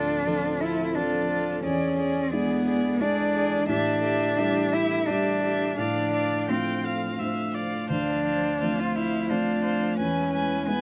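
Neoclassical piano and strings in D minor, this fragile, longing excerpt moves at 86 BPM in a rubato 3/4, cut from a longer piece. A felt-muted upright piano sits up front with a soft, dark, intimate tone, its thick felt and audible action noise giving the accompaniment a close, hushed texture. A single warm violin carries the melody with vibrato and portamento, while a rich solo cello, also up front, sings a second line with a soft attack and expressive slides. A clear, even viola adds smooth bowed accompaniment, and a lush symphonic string section holds very quiet sustained chords. The harmony drifts from Dm7 through E7, A7sus4 and F6/A back to Dm7 before settling on E at 10.0 seconds, all wrapped in light reverb with a mellow top end that rolls off above 10.5 kHz.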